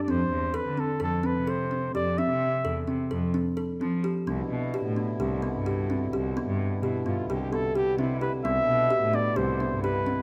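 A breathy, mellow flugelhorn opens at 0.0 seconds with a jazz-style solo melody, lightly touched with vibrato and sitting up front. Beneath it, a woody kalimba plucks short thumb-picked arpeggios with a hollow box tone, and a single muted cello, bowed con sordino, lays down a dark, veiled bass line with vibrato. This short cut from a longer contemporary chamber piece moves in an uneven 9/8 at 258 eighth-note beats per minute, giving it a hypnotic yet restless feel over a shift from F to Cmaj9. At 4.3 seconds a pedal harmonium enters with sustained, reedy chords that seem to breathe. A French horn adds a smooth, classical-style second line at 6.8 seconds before the flugelhorn returns near the close. Close, detailed miking with light reverb keeps every part clear and intimate.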